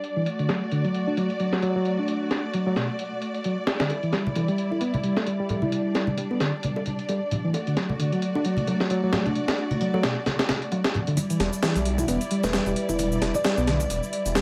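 Vinyl crackle and light reverb frame this funky, gritty breakbeat piece, built on a compressed, sampler-style drum kit with a thumpy kick and high-tuned snare, a dark, bowed string section holding lush sul tasto chords under sidechain pumping, and a barky, reedy electric piano riff through delay. Bright, saturated bongos and congas join at 3.9 s. From 11.2 s a build-up begins as the piano gets a filter sweep, an overdriven electronic shaker enters, and a swirling, thick detuned saw bass with phaser arrives, while a plucked, hollow kalimba melody briefly rings out with an AM radio tint and delay.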